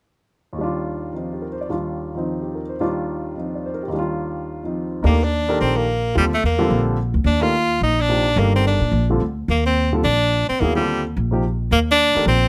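Close, detailed microphones and a light reverb give this modal jazz excerpt an intimate, up-front sound with a spiritual, open mood. The grand piano begins alone at 0.5 seconds, its tone warm and natural, with the noise of its action audible as it voices an Ebmaj9 chord in Eb lydian. At 5.0 seconds the music moves into a new section as the upright bass enters, plucked pizzicato on steel strings with a woody, growly character. The tenor saxophone joins at 5.1 seconds as the soloist, playing a bright, jazz-style melody with vibrato in a middle register. The tempo is a brisk 216 BPM in 4/4 with a swung eighth-note feel.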